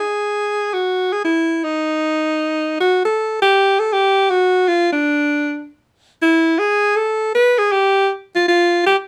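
A clear, up-front alto saxophone plays alone in a moderate studio room across this short swinging jazz excerpt, its light vibrato and scooped notes giving a late-night mood to a solo line that stays between D4 and B4 and shifts into a new section at 3.1 seconds.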